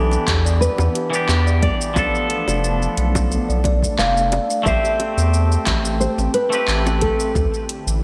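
A lightly swung 89 BPM groove in 4/4 drives this smooth sunset chillout excerpt in A minor, built on a punchy, overdriven electronic kick, a deep house kit of handclaps, metallic hi-hat and shaker with gated reverb, and very quiet, tight, high-tuned bongos. A round, deep analog bass sits up front beneath chords moving from Em7 through Bm7b5 and Am9 to D9sus4, while an airy pad with chorus and phaser sustains under a twangy, clean electric guitar accompaniment and a mellow, woody kalimba playing arpeggios in the background. A thumb-plucked nylon-string guitar carries the melody through analog chorus and delay, set in a moderate plate reverb with bright 1980s-style digital production.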